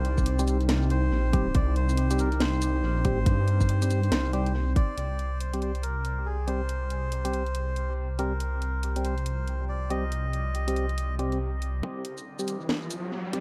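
A deep, rumbling detuned saw bass sits up front in this brooding, cavernous deep dubstep excerpt, which runs at 140 BPM in a half-time 4/4 feel with swung sixteenths in C minor. A tight electronic kick drives the opening drop, falls away, and returns at 11.8 seconds for a short build-up. Meanwhile, a garage kit of cracking snare, hi-hat and shaker plays throughout with tape echo. A reedy, breathy melodica carries the melody in dub echo until 11.2 seconds, over a moody analog pad in the background and hollow, nasal organ stabs coloured with chorus and dub echo. A riser enters at 12.1 seconds, and the echo-heavy mix with light reverb lends the whole piece a spacious, shadowy atmosphere.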